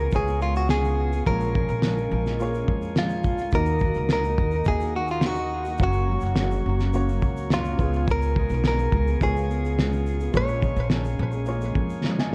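This acoustic pop excerpt moves at 106 BPM in a straight 4/4, with a reflective, tender mood and a dark, warm production under light reverb. A bright, compressed clean electric guitar, recorded direct and picked, carries the melody up front from the start until 10.9 seconds, dressed in spring reverb, plate reverb and delay. Beneath it, a woody, growly pizzicato upright bass with steel strings sits forward, while a fingerpicked, double-tracked dreadnought acoustic guitar and a mellow vintage upright piano accompany in the background, and a clear tonewheel organ with key click and a stopped rotary speaker holds sustained chords, also in the background. A cloth-damped, thuddy drum kit of kick, shaker and snare enters at 0.1 seconds, sounding muffled and gritty in a small room, with a fat snare, tight kick and rolled-off top, and it closes with a fill at 12.0 seconds. The harmony cycles through Db7, Bbm7, Ebm and Gb before returning to Db7 and Bbm7.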